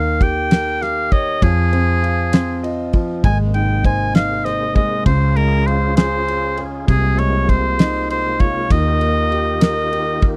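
Swaying in 6/8 at 66 BPM, this romantic pop ballad in Ab major carries an up-front oboe melody with light vibrato and a soft attack over intimate concert grand piano, with audible action noise, and a round, foam-muted fingered electric bass. A damped 70s drum kit of kick, snare and ride sits dark and up front with a fat snare, and the piano adds a fill from 2.3 to 3.2 seconds. At 3.2 seconds a tonewheel organ enters in the background with key click, chorus vibrato and fast rotary speaker, all captured in a dry, close 1970s-style studio sound.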